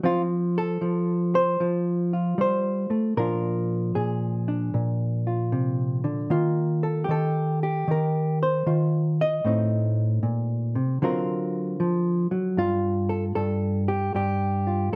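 A clean electric hollow-body jazz guitar opens alone, fingered and compressed, with a dark tone placed up front in the mix. This is moody, cool solo jazz in G minor at 76 BPM in 4/4, swung at 66% on the eighths, and tuned to A4 = 441 Hz. The guitar spans G2 to Eb5 as it moves through a progression that goes from F to Bb7, then Eb69 at 6.3 seconds, Adim, D7alt and finally G7sus2 at 12.6 seconds. Light reverb gives the instrument a little air, and the production overall is dusky and warm. The 15-second passage is cut from a longer piece, so it stops on that suspended chord.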